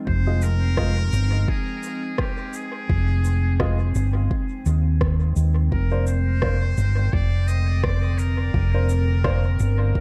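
A warbling, lo-fi pad of sustained chords opens this deep, meditative ambient dub excerpt, moving from Fm7 to Bbadd9/F at 5.7 s under a soaked digital ambience. A distant, buzzy trumpet in a metal mute sings a light-vibrato solo through dub echo, while a dark, round hollow-body bass sits up front over an overdriven, layered electronic kick and a roomy shaker and rim click. Woody upright piano stabs with audible action noise drift through a filter sweep and echo until 9.4 s.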